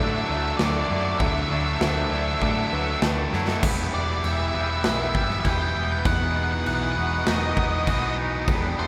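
An octave-fuzz lead guitar carries the melody in this melancholic, brooding post-rock piece in E minor, its dark, fuzzy tone sitting high over a dense band at 99 BPM in a straight 4/4. Beneath it, a hollow-body short-scale electric bass played with the fingers gives a round, amped low end, while two tight distorted guitars pick bright riffs, one of them tucked into the background. A twangy, clean electric guitar with tremolo picks arpeggios further back, and a very quiet felt-muted upright piano adds soft, intimate arpeggios with audible action noise. Behind everything, a distant, woody symphonic string section holds lush bowed chords with vibrato. The opening is a build-up over Dadd9 that closes with a drum fill at 3.3 seconds; the big acoustic rock kit, with a punchy kick, medium-tuned snare and bright crashes, comes in at 0.6 seconds. At 3.6 seconds the piano and the background distorted guitar drop out as the harmony moves to Em and then B/E, all of it bathed in a long, wet cathedral reverb from a church or concert hall in this fragment of a longer piece.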